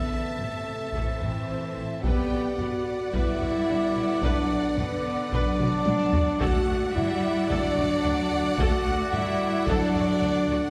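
Heard from further back in a wet scoring-stage reverb, this relentless, epic orchestral film-score excerpt moves through Am and Bm before landing on D at 6.4 seconds. Lush bowed violins carry the melody and a second line over a smooth viola accompaniment, while an expressive cello section and a soft-attack double bass section hold the bass, a mellow French horn section and a very quiet, clear trombone section sustain chords, and a dark, distant trumpet section adds stabs. A taiko ensemble struck with heavy sticks drives the drums, with a fill from 5.6 seconds.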